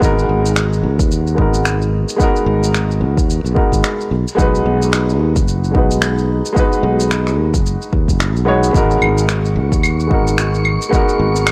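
This sunset chillout piece moves at 110 BPM in 4/4 with a 16th-note swing of 57%, set in G# minor, and is cut from a longer piece. A deep, tape-warm electronic kick drum anchors the groove, layered with electronic shaker, finger snaps and claves that sit lower in the mix, both re-recorded in a small room. A growly, up-front fretless electric bass sustains beneath a dark, mellow baby grand piano whose intimate sound carries audible action noise, vintage 12-bit sampler grit and tape echo. The harmony moves from G#m9 to B6 at 4.1 seconds and back to G#m9 at 8.7 seconds, giving the wistful mood a gentle sway. At 9.3 seconds an airy, breathy wind-like tuned noise texture drifts in far in the background with its own reverb, while the overall recording stays dry and gritty.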